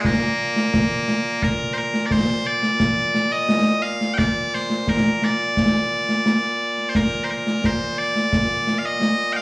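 Heard through a club PA with moderate reverb and studio ambience, this short, ceremonial and stirring cut of Scottish pipe music in Bb major at 87 BPM features loud, piercing bagpipes up front carrying a continuous solo melody with slapback echo, backed throughout its 9.4 seconds by acoustic concert snare and bass drums with bright cymbals and a small-room sound.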